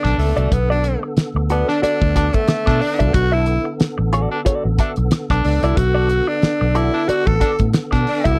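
A dry, close 1970s-style studio sound with light reverb frames this driving, sly funk excerpt, built on a swung sixteenth-note feel over a Bm7 chord. A raspy, forceful tenor saxophone with slapback echo carries the solo melody up front, a gritty baritone saxophone holds a second line, and a clean, compressed electric guitar through wah supplies the accompaniment. A percussive tonewheel organ sustains chords with key click, light overdrive, chorus vibrato and a slow rotary speaker, while a round, foam-muted fingered electric bass and a damped drum kit with fat snare, tight kick and hi-hat sit up front through the full 8.4 seconds.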